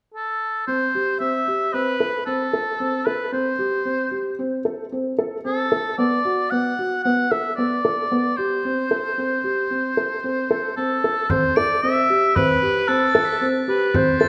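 A clear oboe with light vibrato carries a restless, hypnotic melody in this contemporary chamber piece in 5/4, over soft, felt-muted upright piano arpeggios that sit boxy and intimate up front, moving from Am7 to Bm7 and then Am. A close frame drum played with soft hands enters at 11.3 seconds, and shimmering, bell-like crotales join at 11.6 seconds, the whole set in a moderate concert-hall reverb.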